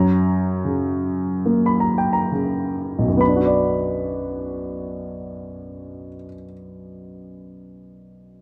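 In a rubato 4/4 that slows through its opening 3.2 seconds, this wistful, melancholic fragment of classical, lyrical solo piano features a warm, present grand placed up front with short sustain, ranging from B1 to B5 in a moderate small-room reverb and moving from an F# chord to Bm as a new section begins at 3.2 seconds.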